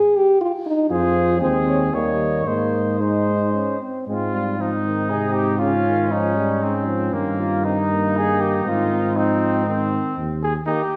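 A brass quintet rings out in a reverberant recital hall, with a triumphant, warm mood and a free, rubato lilt in triple metre. The French horn begins alone with a mellow accompaniment, and at 0.9 seconds the rest of the group enters. A dark cornet carries the melody from a distant, roomy position, while the trumpet plays a second line with a soft attack and a smooth top. The clear trombone adds accompaniment from the background, and the tuba sits up front on the bass. Light vibrato touches the cornet, trumpet and horn, the trombone has its own vibrato, and a short opening phrase gives way to a longer second passage at 4.1 seconds before this fragment of a longer piece closes with the cornet at 11.0 seconds.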